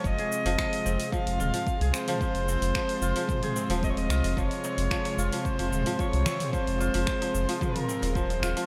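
A bright digital sheen from the 1980s and a moderate plate reverb frame this short fragment of organic downtempo in straight 4/4, its mood meditative and mystical. A single dark kamancheh carries the melody with an airy bow, soft attack, light vibrato and portamento, its phrases trailed by delay, while a close, intimate studio string section holds sustained chords played sul tasto under a sidechain pump. A crisp, ringing kora adds fingerpicked arpeggios, also echoed through delay. Below them a warm, round sine sub bass sits up front, treated with tube saturation and sidechain pumping, alongside a deep, layered electronic kick. A deep house kit of cabasa, finger snaps, dark hi-hats and toms fills out the groove in a small room ambience, and at 4.6 s a very quiet clay-shelled darbuka joins with hard hands on natural skin.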